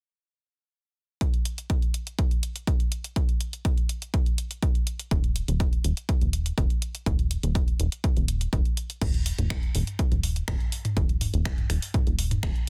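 Cinematic and hypnotic, this melodic techno fragment runs at 123 BPM in a straight 4/4, tuned to A4 = 439 Hz. From 1.2 seconds a punchy, tape-warm electronic kick sits up front beside a layered, overdriven techno kit of hi-hat, finger snaps, toms and crash cymbal, its snare soft-clipped. At 5.1 seconds a plucky analog bass arrives low around Eb1, a detuned sawtooth and pulse-wave voice with ring modulation, a fast-attack filter pluck and sidechain pumping, before a new section begins at 9.0 seconds, all in a dry, dense, heavily limited mix.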